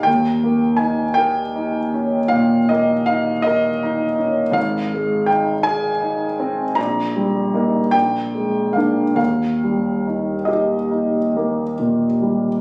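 A phone-captured, compressed recording in a large, moderately reverberant studio presents a tender, nostalgic romantic nocturne for solo concert grand piano in Eb major and 12/8, its intimate, up-front tone carrying deep bass and audible action noise as it moves with rubato at 45-56 BPM through a short passage cut from a longer piece, passing from Eb7 to Ab and settling on Eb at 9.2 seconds.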